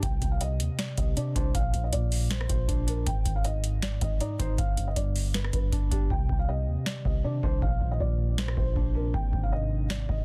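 A dark, brooding trap excerpt in half-time feel, built on a booming analog drum machine that sits up front with a deep kick, crisp snare, metallic hi-hats and rim clicks, all pushed through overdrive. A long sustained 808-style bass with a sine tone and fast attack anchors the low end, decaying in a mellow way beneath the beat. A felt-muted upright piano carries the melody with a soft, boxy, intimate sound, its thick felt and audible action noise coming through a digital delay. Underneath, a tine electric piano plays accompaniment through a combo amp with a medium tremolo, clean and warm. The chords cycle from Cmadd9 through Bbadd9 and Ab5 to G. The hi-hats drop out at 6.1 seconds, and a very quiet, moody ambient pad of detuned sawtooth voices with chorus and its own built-in reverb slowly fades in at 7.0 seconds, all within a dry, dense, heavily limited modern master.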